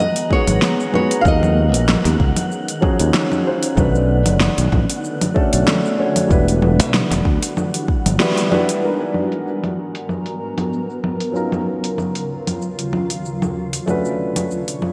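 This excerpt of wistful sunset chillout opens with a small, dark nylon-string guitar, fingerpicked with delay, carrying the melody for only the first 2.5 seconds over a mellow, deep-voiced grand piano accompaniment and a shimmering, ethereal pad of detuned sustained chords treated with chorus and phaser. Set at 95 BPM in 4/4 with a gentle swing on the sixteenths, the piece moves in G# minor through G#m9, D#m9, Bm9 and Em9 before cycling back. A deep house kit sits up front with a fat snare, metallic hats, cabasa and congas, all low-pass filtered and bathed in gated reverb. A tape-warm electronic kick enters at 0.3 seconds and a bright, direct fingered electric bass with tube saturation joins at 0.5 seconds to drive the groove, while an airy, breathy wind-like texture lingers in the background. The kick and bass drop away by 8.2 seconds, where a band accent lands, and a filter sweep runs over the drums from 8.8 seconds as the harmony returns to G#m9. 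A lush hall reverb and bright 1980s-style digital sheen frame the whole.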